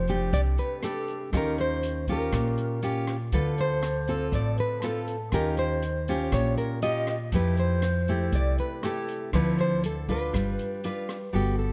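Light reverb surrounds this relaxed, sophisticated bossa nova. An up-front, bright fingerpicked nylon-string guitar carries the melody over a second, warm fingerpicked nylon-string guitar and a woody pizzicato upright bass, while an airy, close-miked alto flute with vibrato and a soft attack sits in the background on a slightly unsteady second line until 11.0 seconds. An acoustic jazz kit recorded in a studio room, with a boomy kick, hi-hat and rim click, enters at 0.1 seconds as the harmony moves through chords such as Eb9, Dm7 and Fmaj9 before closing on G7 in this excerpt cut from a longer piece.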